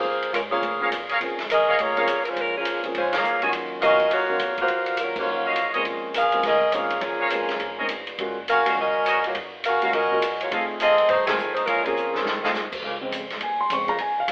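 The recording has a telephone sound, with the band playing live together in a wet stone room. It is a dramatic, sultry big band swing piece in Bb minor at 206 BPM, cut from a longer work, with a swing feel on the eighth notes. An up-front saxophone section with light vibrato carries the melody, while a tight, vintage-toned trumpet section with a soft attack adds stabs from 0.8 seconds, and the band hits several accents together. Underneath, an intimate concert grand piano with audible action noise and long sustain provides accompaniment, a woody, thumpy pizzicato upright bass sits in the background, and a natural-sounding drum kit with a punchy kick and ride cymbal swings along, playing a fill at 12.0 seconds. At 12.8 seconds the piano takes a brief solo over dark sustained chords from a second saxophone section, as the harmony returns to Bbm7 after passing through Ebm9, Gbmaj7 and F7#9.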